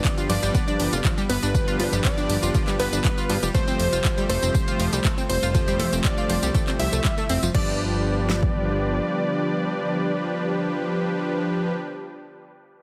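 A punchy kick and fat snare from the up-front deep house drum kit drive this euphoric, hopeful progressive house passage at 120 BPM in a straight 4/4, cut from a longer piece and opening on the drop in G mixolydian. A second house kit adds overdriven, bright hats with crash, ride, handclaps and tambourine, and falls away at 7.7 s, a little before the main kit stops at 8.5 s. Underneath, a thick, detuned sawtooth bass with sidechain pumping and a filter sweep carries the low end until 9.0 s. A round, chorused analog pluck plays arpeggios with dub echo and sidechain pumping, while a smooth, full-bodied soft supersaw adds pumping stabs. A catchy, punchy unison lead with a sub octave sings the melody through dub echo over a very quiet, warbling vintage pad holding sustained chords. The harmony moves from G7 to Fadd9 and back to G7, all set in light reverb with a heavily compressed radio sound.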